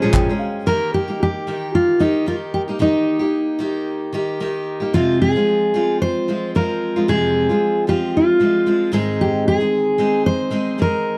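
A full-bodied fingerpicked jumbo acoustic guitar carries the melody up front, bathed in plate reverb, in this carefree, heartfelt pop fragment cut from a longer piece. A dark, mellow, intimate upright piano, woody, worn and slightly detuned with audible action noise, opens with a brief fill that ends at 0.7 seconds, while a picked steel-string acoustic guitar with finger squeak and an auditorium sound accompanies beneath the lead throughout. The gently swung sixteenths sit in a warm mix with light reverb and a dark overall production.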